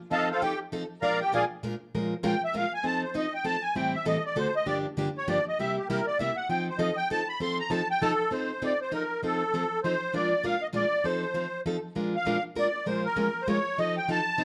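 A swung waltz at 198 BPM in 3/4 gives this charming, playful jazz excerpt in F mixolydian its lilt, with a picked, bright parlour-style steel-string acoustic guitar comping up front through changes like F7, Bb7, Bbm7 and D7b9, its finger squeaks audible. Out in front, a reedy musette accordion with shimmering musette tuning carries the melody and takes a solo over the first 8.3 seconds. A moderate studio reverb and a dark production frame both instruments, and the clip cuts off at 14.4 seconds.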